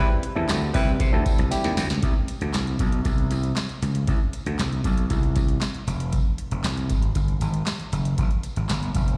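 Early-eighties boogie funk at 117 BPM in 4/4 with a straight feel, this smooth, danceable passage is cut from a longer piece and sounds like a live gig heard through the venue's PA, with recital-hall reverb. A clear, tight horn section with light vibrato and a barky tine electric piano through a combo amp both carry slapback echo over a Cmaj7 chord, and both stop within the first 1.8 seconds. A gritty, overdriven slap bass growls up front throughout, while a booming analog drum machine supplies a deep kick, crisp snare, metallic hi-hat and handclaps with a tape-warm character and a short room on the snare, claps and hats. A drum fill leads into the second section at 2.0 seconds, where the harmony drops away until an Fm arrives at 5.9 seconds. A jingly tambourine with slapback echo sits distant in a large room, deep in the background.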